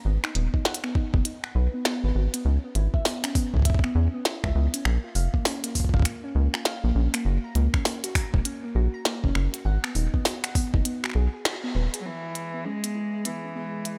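IDM in C# dorian at 100 BPM, with a swung 16th-note feel and a melancholic, eerie mood, heard as a short cut from a longer piece. A harp-like synth pluck spins ringing, mellow arpeggios through chorus and tape echo across the whole span, while a rubbery, hollow square bass sits up front until about 11.9 seconds. A glitchy drum kit of finger snaps, clicky hats and a tiny snare carries a tape-warm, produced character, joined by a gritty, overdriven electronic kick that drops out at 10.9 seconds just before a band accent. The harmony moves from G#m7 through C#m7, A#m and F# before returning, all within a digital ambience. A distant, bowed cello with smooth vibrato takes the melody at 12.0 seconds, and at 12.1 seconds the music turns to a new section as a filter sweep opens on the pluck. From 12.5 seconds a pulsing, detuned gated texture with sidechain pumping hovers in the background.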